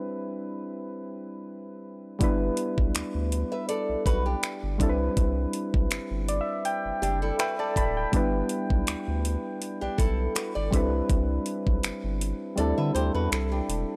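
Contemporary R&B with a tender, romantic mood and a lightly swung feel, opening on soft, round electric-piano-like synth keys with chorus over Cmaj9. A saturated, thick sub bass and an electronic drum kit of finger snaps, metallic hi-hat and knocking kick arrive at 2.2 seconds, followed at 3.5 seconds by bright, fingerpicked flamenco guitar arpeggios with audible finger squeak and analog delay. The keys add a fill midway, and the kick drops out at 12.6 seconds as the harmony moves from G6 and Cmaj9 to D9sus4, all in a dry, gritty recording cut from a longer piece.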